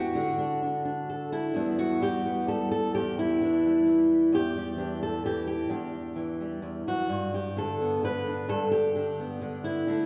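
Wistful and haunting, this brief folk excerpt is a solo fingerpicked steel-string acoustic guitar in E minor at 130 BPM in a straight 3/4, sitting warm and up front as it moves from a D chord into Em7 at 1.6 seconds and on to G at 7.1 seconds, ranging from E2 to B4 with tuning at A4 = 438 Hz, all bathed in the wet reverb of a church or concert hall before the recording is cut off at 10.1 seconds.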